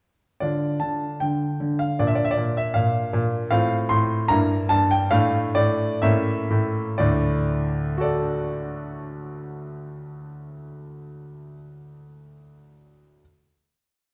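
Elegant and restless, this short classical-period piano sonatina in D minor and 2/4 moves at 60-78 BPM, with a solo grand piano, smooth, vintage-toned, up front and short in sustain, setting a single-line melody over repeated bass notes from D2 to C6, slowing from 2.8 seconds before settling at 7.0 seconds onto a final D chord that rings in a dark, reverberant recital hall.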